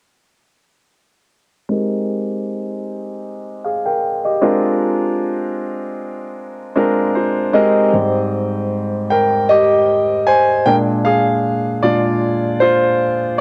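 Dreamy, romantic R&B with a gently swung feel, where a warm, polished grand piano sits up front, moving through a filter sweep from 1.7 to 7.9 seconds before stepping out alone as a solo until 13.4 seconds, all colored by a cassette tape effect, a low-pass filter, moderate spring reverb and small-room ambience in this short fragment of a home recording.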